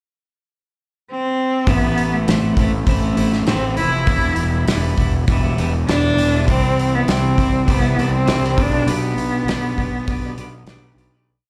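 Heard as a live gig through the venue's PA with club reverb, this angsty, cathartic quiet-loud alternative rock piece in A minor at 100 BPM begins with a rich, bowed solo cello carrying a motif-based melody with vibrato and slapback echo from 1.1 s, joined at 1.7 s by bright, twangy twelve-string electric guitar arpeggios with slapback echo and digital delay, growly, overdriven fuzz bass driving eighth notes up front, and a loose indie drum kit with a tight kick and a big rock groove, moving through Amadd9, Em, C and G/B before fading out from 8.9 s.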